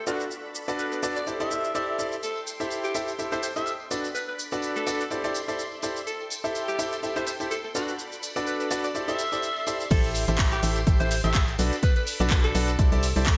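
Energetic and bittersweet, this piano house excerpt in A dorian moves at 125 BPM with a light swing, as a brilliant, up-front grand piano riff and a raspy, growling alto saxophone melody with delay ride over shimmering, vintage string-machine violins that sweep through a filter and pump behind the mix, cycling through Bm7, C69 and Am7. An overdriven house kit with bright hats, handclaps, shaker and crash carries gated reverb, and a tambourine joins quietly in the background at 2.2 seconds. At 9.9 seconds the drop brings in a punchy, overdriven electronic kick and a hollow, dark, organ-like FM bass, all set in a lush hall with glossy 1980s-style digital sheen.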